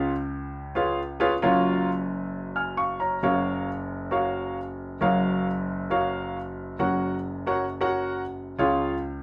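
Soul in F# major at 134 BPM in a straight 4/4, this short piece cut from a longer one feels danceable and joyful. A lone baby grand piano carries everything from 0.0 to 9.2 seconds, ranging from F#1 up to E#6 with a warm, intimate, natural tone, audible action noise, and an up-front placement. The harmony opens on C#7, settles onto F#maj7 at 1.4 seconds, and later moves to plain F# at 6.8 seconds before landing on C# near the close. The music passes through three short sections, with the final one beginning at 6.8 seconds. A wet studio reverb with a short decay gives the sense of a live room around the instrument.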